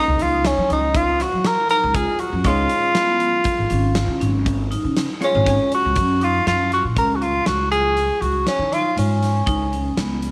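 Driving and bright, this progressive instrumental in 7/4 at 120 BPM and F# major, cut from a longer piece, sets a warm, subtoned tenor saxophone melody with scooped notes up front over woody, thumpy pizzicato upright bass on gut strings, a huge arena drum kit with a punchy kick, medium-tuned snare and hi-hat in a pumping hall, metallic vibraphone arpeggios ringing with slow motor vibrato in the background, and a dark, clean, compressed, double-tracked archtop guitar that adds a hollow-body fill from 5.0 seconds before dropping out at 6.0 seconds, as the chords move from F#6 through F#maj7(no3) to C#7sus2 inside a moderate echo-chamber reverb.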